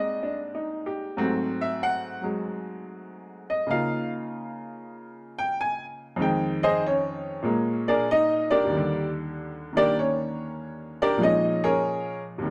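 A woody, brilliant upright piano sits up front and plays alone throughout this sophisticated, playful solo jazz fragment, its swung eighths moving through lush chords such as Abmaj9, Db69, Fm9 and Ebmaj7, all set in a moderate large-studio reverb within a dark production.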